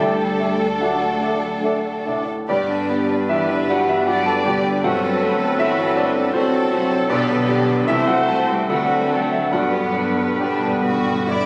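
Captured on a phone in a reverberant room, this lush, lyrical classical passage in G major moves in a rubato 3/4 at roughly 64-80 BPM. A clear, polished baby grand piano carries the melody up front with long sustain, shadowed by a very quiet violin section. A second, expressive violin section, a hollow flute, clarinet and cor anglais weave secondary lines over viola and bassoon accompaniment, mellow sustained French horn chords, and a bowed foundation of distant cellos and close double basses. Soft-mallet timpani with a round tone join at 4.8 s and play a fill near the close, and a dark, soft-edged trumpet stab lands at 11.3 s.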